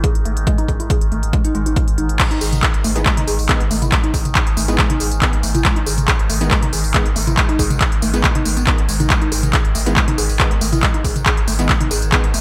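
A bright, 1980s-style digital production with light reverb frames this driving peak-time techno cut, taken from a longer piece, moving at 139 BPM in straight 4/4 and sitting in G# phrygian over a G# minor chord. The mood is hypnotic and relentless, anchored by a punchy, tape-warm electronic kick and an up-front, layered kit of smooth hi-hats, handclaps, tambourine, toms and crash cymbal, its percussion pumping against the kick and treated with gated reverb. Beneath it, a deep, thick saturated sub bass holds G#1 with overdrive and a low-pass filter, while a woody, dark wave-folded pluck plays the riff between G#3 and G#4, its short, percussive notes colored by tube saturation, lush chorus, delay and a moving notch. Far back, a nasal, resonant drone with sweeping overtones sustains between G#2 and D#3 through chorus and its own reverb. From 3.0 seconds a full-bodied, detuned supersaw stab joins in the background, ranging from D#3 to B3 with a filter sweep and digital delay, and much of the mix breathes with sidechain pumping.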